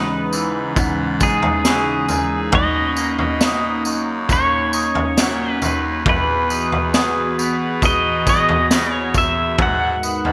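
A pedal steel guitar carries the melody from the first moment, its clean, compressed tone played with fingerpicks and shaped by slide and volume swells, drifting through analog chorus and delay. Beneath it, a hollow, flute-like pad built from detuned square, triangle and sine tones holds mellow chords with a slow attack. Further back, a twangy clean electric guitar picks bright arpeggios through lush chorus and delay, while a raspy, punchy baritone saxophone with vibrato carries the bass line. At 0.3 seconds a raw garage drum kit joins up front, with a boomy kick, high-tuned snare, tambourine and toms sounding saturated and gritty in a small room with a rolled-off top. This hazy, haunting dream pop fragment moves at a slow 68 BPM in 4/4 over C#m9, Bmaj7, Emaj9 and G#m7, set in a lush hall reverb with bright 1980s-style digital production.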